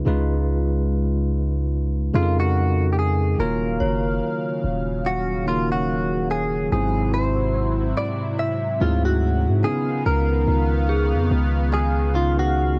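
R&B with a moody, longing feel and a lazy swing on the sixteenths, heard as a short section cut from a longer piece. A bell-like tine electric piano carries the chords from the opening, colored by cassette tape, while a deep, sine-toned 808-style bass sits up front with fast attacks and long decaying notes. At 2.2 seconds a twangy clean electric guitar, recorded direct, picked and compressed, takes the melody up front, dressed in subtle chorus, plate reverb, analog delay and tape. A smooth, detuned sawtooth pad with a slow attack and a moving notch enters at 3.4 seconds with chorus, and a chiming, inharmonic FM synth rings in the background from 3.8 seconds with ensemble chorus, tremolo and delay. The harmony drifts through ninth and augmented chords, and the take carries the moderate booth ambience of a home cassette recording.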